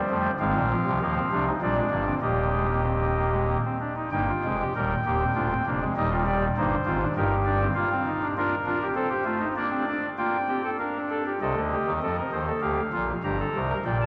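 A soft reed pipe organ on an oboe stop sits up front, its baroque voicing and chiff carrying a solemn, serious four-part fugue in Eb major, ranging from D1 up to Bb5. The piece moves at 98 BPM in a straight 3/4, and the opening material returns at 11.4 seconds before this short cut from a longer work ends. A cavernous cathedral reverb with a 7.0-second decay surrounds the organ, and the sound carries the worn, warbling pitch drift of old cassette tape.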